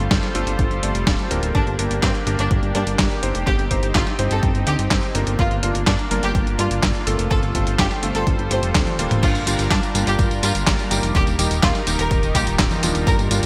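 A fat, tube-saturated analog bass drives this nostalgic, melodramatic italo disco excerpt alongside a punchy electronic kick and an up-front 12-bit drum machine of snare, handclaps, hi-hat, tambourine, congas, toms and crash cymbal, while a lush, warbling chorused pad holds sustained chords, a cutting electric grand piano adds vintage stabs in the background, a biting chamber violin section carries the delayed melody from 1.5 seconds, and a drum fill at 8.7 seconds leads into a new section, all set in a bright 1980s-style digital hall ambience.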